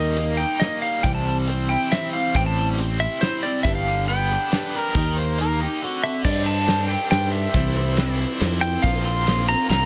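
Set in a straight 3/4 at 138 BPM, this brief folk rock and heartland rock passage rolls along with a nostalgic, open-road feel, cut from a longer piece. A damped 70s drum kit enters at 0.2 seconds with dark cymbals, a fat snare and a tight kick, its dry, rolled-off sound sitting under a fingered electric bass that is amped and up front. A bright, full-bodied jumbo acoustic guitar is picked as accompaniment, while a biting, double-tracked overdriven electric guitar plays a riff colored by tremolo. Over this, a clean, twangy pedal steel guitar carries the melody with fingerpicks and slide, its tone compressed. A close-miked harmonica with light vibrato steps in briefly between 4.8 and 6.1 seconds as a second line, and the chords move from Eb through C, Am7 and G toward a closing Bbsus2, all wrapped in light reverb.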